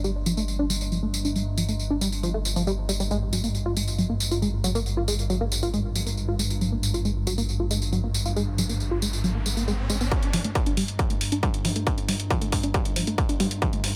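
A straight 4/4 pulse at 137 BPM drives this intense peak-time techno excerpt, as a punchy analog drum machine, overdriven and recorded in a large room, works hi-hat, tambourine and toms under a tight, dark sequenced sawtooth riff with chorus, tube saturation, delay and sidechain pumping. A deep, rumbling detuned saw bass and an eerie, metallic FM drone with its own reverb breathe with the same pumping, while a riser enters at 8.1 seconds. At 10.1 seconds the bass drops out and a distorted, up-front electronic kick enters for a build-up, with a filter sweep on the synth in a dry mix.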